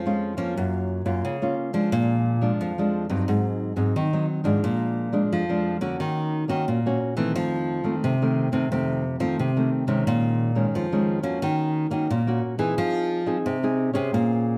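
A bright, fingerpicked nylon-string guitar plays accompaniment up front over a full-bodied second nylon-string guitar carrying the bass line with audible finger squeak, both heard throughout this 14.6-second cut from a longer piece of nostalgic, bittersweet samba and choro in Bb minor at 88 BPM, moving through chords such as Bbm7, Gbmaj7, Ebm7 and F7 in a moderate studio reverb.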